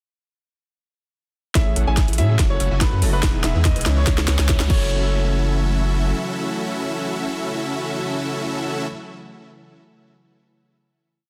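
A dense, heavily limited master with light digital reverb frames this bittersweet, dreamy future bass piece, which moves in a half-time feel. A hushed, felt-muted upright piano with audible action noise plays dotted-rhythm chords, while a brilliant concert grand carries a repeating riff melody with delay and sidechain pumping. Around them sit a breathy, chorused pad, a round, gentle pluck cycling a 6-step arpeggio that drifts against the bar, a huge detuned supersaw riff of pulsing gated chords under a low-pass filter, and a thick, saturated sub bass following the chord rhythm. From 1.6 seconds, a hard-clipped kick and a trap kit with a sharp snare, metallic hats and hat rolls drive a build-up that a faint riser joins at 2.9 seconds, leading to the final hit at 4.9 seconds.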